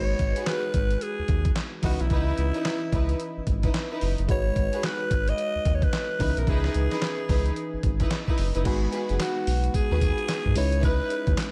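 A swung sixteenth-note groove at 110 BPM in 4/4 drives this slick, bouncy slice of new jack swing R&B, cut from a longer piece and set in G# minor. A dusty, sampler-style drum kit enters at 0.2 seconds and sits up front, its thumpy kick, fat snare, hi-hat, handclaps, tambourine and crash cymbal carrying a compressed, 12-bit grit, while a round analog bass holds down a deep, dark low end. A glassy FM electric piano with bell-like attacks and a chorus-thickened warble fills the middle as accompaniment, and a dark studio string section adds soft-edged, bowed stabs with light vibrato and a touch of delay. Over this, a raspy alto saxophone carries the melody with a growling tone, scooped notes and subtone, its close-miked sound trailed by delay. The harmony moves between G#m7 and C#m9, and a second section arrives at 8.7 seconds, the whole band sitting in a light reverb.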